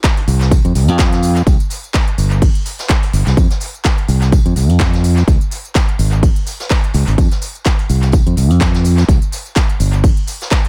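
Piano house at 126 BPM in F minor, this short cut from a longer piece feels soulful and energetic, with a swung sixteenth-note groove in 4/4. A punchy, layered electronic kick drum sits up front through the whole 10.6 seconds, joined by a house drum kit of handclaps, crisp hi-hats and tambourine treated with analog delay. Further back, a vintage brush drum kit adds a distant, roomy layer of hi-hat, medium-tuned snare and tambourine with a warm, rolled-off top. It also carries high-pass filtering on the hats, snare, percussion and room, sidechain pumping on the hats and percussion, and its own analog delay. A bright, direct fingered electric bass enters at 0.3 seconds and holds the low end between G1 and F2, up front and shaped by sidechain pumping. The small room ambience and echo-heavy mix give the drums a sense of space while the bass and kick stay close and forward.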